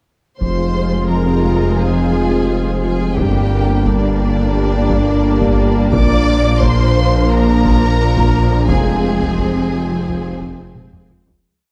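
A dark, warm mix sits in a moderate scoring-stage reverb, giving this short hybrid orchestral and electronic film cue a tense, relentless mood in straight 4/4. Lush bowed violins carry the melody with vibrato and a focused, smooth top, while a second violin line with a soft attack doubles the tune at the octave. Rich violas, clear, vintage-toned trombones and very quiet, shadowy French horns hold sustained chords in the background. A detuned sawtooth analog pad with chorus adds a long-release cushion, and a very quiet, round, tine-like FM synth pluck runs a pulsing ostinato. The low end stacks a deep sine sub bass with very quiet woody cellos, intense double basses and a solo tuba doubling the bass line, as a taiko ensemble with heavy sticks pounds a big drum ostinato over a cycle of Fm, Gm and Bb chords. The piece fades out from 8.7 seconds, and a taiko fill arrives at 10.8 seconds to close it.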